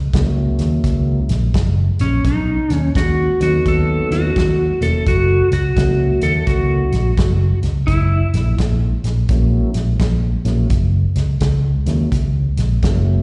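A clean lap steel guitar carries the melody from 2.0 to 8.5 seconds, played with fingerpicks and slide, with volume swells, slapback echo and plate reverb giving its up-front voice a glowing sheen. This swaggering, soulful electric blues shuffle swings at an easy, strutting pace, moving from F#7 to B7 and back to F#7 in this short excerpt cut from a longer piece. Beneath it, a dark, round, foam-muted electric bass sits punchy and up front. A soul drum kit of hi-hat, tight kick and medium-tuned snare sounds distant and roomy, with a rolled-off top. A soft, flute-like tonewheel organ fills in the chords with audible key click, a slowly turning rotary speaker, plate reverb and slapback echo. The whole performance comes across as a live gig heard through the venue's PA, wrapped in recital hall reverb and dull at the very top.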